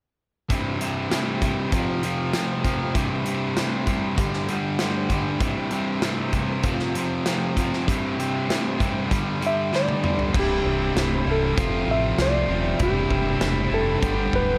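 Light reverb and a small-room ambience give this short classic rock cut, taken from a longer piece, a natural sound. At 98 BPM in a straight 4/4 and C major, two overdriven, picked electric guitars drive a riff together: one crunchy and warm in the low register, the other bright and up front, reaching higher. A big acoustic rock kit with bright cymbals, a medium-tuned snare, a punchy kick, hi-hat and toms pushes the groove with confident energy as the riff cycles through C5, F5 and G5. A dark, clean lap steel slides in with a fingered melody at 9.5 seconds, and a drum fill at 9.7 seconds leads into the second section. At 10.3 seconds a growling, overdriven fingered bass joins, punchy and amped, as the harmony opens into C, F, C/E and G.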